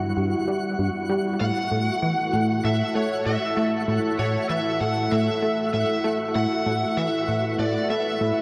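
A bright, detuned resonant pad, a punchy, funky analog bass riff in lush chorus and delay, and a sparkling granular shimmer open this cosmic, luminous ambient space-music fragment in a dark hall reverb, before an overdriven lead guitar melody enters up front with delay at 1.4 seconds.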